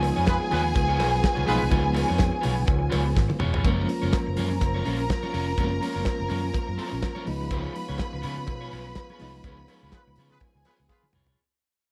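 A swung disco groove at 124 BPM in 4/4 drives this joyful, glamorous cut from a longer piece in F# major, built on a damped 70s drum kit with a fat snare and tight kick, joined by a punchy, fingered electric bass. Soft-handed congas sit very quiet under the kit, while a metallic cowbell rings from the background. Lush, bowed studio strings carry a second line above, and a mellow French horn section holds sustained chords from a distant, roomy place. A dark, slightly broken-up picked electric guitar and a reedy electric piano with fast tremolo fill out the accompaniment, the piano tucked well behind. A tight pop-style horn section punches stabs at 0.3 seconds and again at 9.9 seconds, as the harmony moves from C#7 to F#maj7 and back, with a drum fill at 3.2 seconds leading into a fade-out that begins at 3.6 seconds and a band accent near the close.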